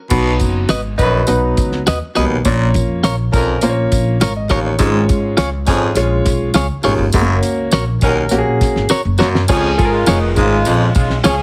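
A straight 4/4 groove at 102 BPM drives this urgent, passionate slice of uptempo 1960s-style soul, cut from a longer piece. A cloth-damped, thuddy drum kit, dry and dark with a fat snare, tight kick and dark cymbals, anchors the beat alongside a woody, growly pizzicato upright bass and a jingly, close tambourine tucked low in the mix. A raspy, gritty baritone saxophone carries the riff over a clear, natural grand piano accompaniment, while a clean, picked electric guitar adds compressed stabs from 0.7 seconds and a tight horn section with light vibrato joins at 1.0 seconds to play a second line. The chords move from B through A#m, C#/G# and F#, and a drum fill at 8.9 seconds leads into a new section resting on C#. Light reverb and heavy multiband compression give the whole track a loud, radio-ready sheen.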